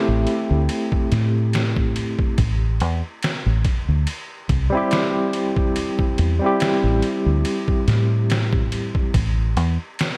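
A deep, dark fingered electric bass anchors this brooding, melancholic trip hop fragment, its foam-muted tone round and punchy as it sits up front from 0.1 seconds. A barky tine electric piano supplies the accompaniment, its bright, clean sound colored by tremolo and tape echo, and it drops out at 9.1 seconds. A sampler-style drum kit enters at 0.3 seconds with a thumpy kick, medium-tuned snare and ride cymbal, pitched down, compressed and gritty with overdrive and studio reverb. The groove carries a light swing on a single melancholy harmony, and a layer of vinyl crackle hangs over the light digital ambience of this short cut from a longer piece.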